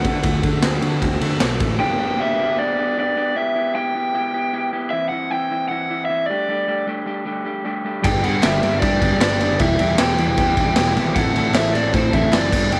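Jangly and upbeat, this indie rock excerpt moves at 154 BPM in a straight 4/4 in G major, cut from a longer piece. An overdriven garage guitar carries the melody in a high register throughout, while a dark, slightly broken-up guitar through a small old amp plays a compressed riff with a warbly pitch drift underneath. The full band is present only at the start and again from 8.0 seconds: a clean, hollow-body semi-hollow guitar with ensemble chorus sits in the background, a round fuzz bass adds overdriven weight, and a gritty, saturated drum kit with a punchy kick, medium-tuned snare, crash and ride sits up front in a pumping stone room. In between, the two guitars carry the song alone over a progression moving from G through Em and C/E to Dsus4 before returning to G, Em and Am. A very quiet, crisp group handclap with a vintage, band-limited tone joins the drums in both full-band passages. 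Light reverb and small room ambience give the mix a raw, close garage feel.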